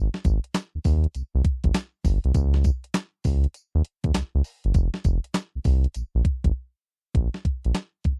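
A swung sixteenth-note groove at 100 BPM in 4/4 drives this slick, bouncy new jack swing R&B fragment in F minor, with a clean, tape-warm 12-bit drum machine of thumpy kick, fat snare, handclaps, hi-hat and tambourine sitting up front beside a round, deep, dark analog bass of sawtooth and sine tones with a fast attack and sustained notes, all dry and close in a 1970s-style studio sound, before a brief break at 6.5 seconds gives way to a new section at 7.1 seconds.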